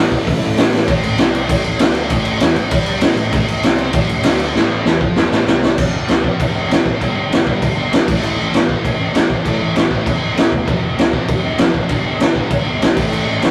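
A rough rehearsal-room recording with light reverb puts a raw garage drum kit up front, its saturated, gritty sound carrying a boomy kick, a high-tuned snare, hi-hat and crash cymbal with a rolled-off top. This is angry, urgent punk rock in A minor at 196 BPM in a straight 4/4, cut from a longer piece. Two overdriven semi-hollow guitars with a hollow-body tone and a bright, scooped high-gain guitar that is double-tracked all play the riff, sitting very quiet beneath the drums. A growly fuzz electric bass, picked and overdriven, rumbles in the background. A drum fill at 0.7 seconds launches the opening on A minor, and another from 4.5 seconds leads into the second section at 5.8 seconds, where the power chords cycle through F5, G5 and A5 twice.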